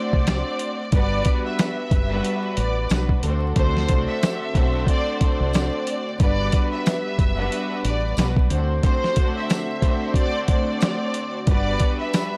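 Boom-bap hip-hop in G major at 91 BPM with a swung 16th feel and a warm, nostalgic mood, this dry, gritty excerpt with vinyl crackle sets a thumpy, fat-snared sampler-style drum kit and a round, punchy dub bass up front beneath a clear, biting violin section melody and a soft-attack string section, while tight horn stabs with tape echo enter at 0.9 seconds in the background and a very quiet detuned sawtooth pad and jingly tambourine join shortly after over chords alternating between D7 and Gmaj7.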